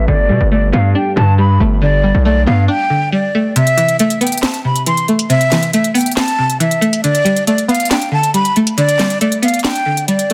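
A breathy, vibrato-laden jazz flute melody opens this dark, melancholic half-time trap fragment over a twangy, warbling resonator pluck, a deep, detuned analog pad in the background and a saturated, aggressive 808-style bass, as a filter sweep unfolds; the bass cuts out at 2.7 seconds for a break, the pad ends at 3.5 seconds, and at 3.6 seconds a trap kit of sharp snare, crisp hi-hats and handclaps enters with its kick muted, all in a dense, heavily limited mix with light reverb.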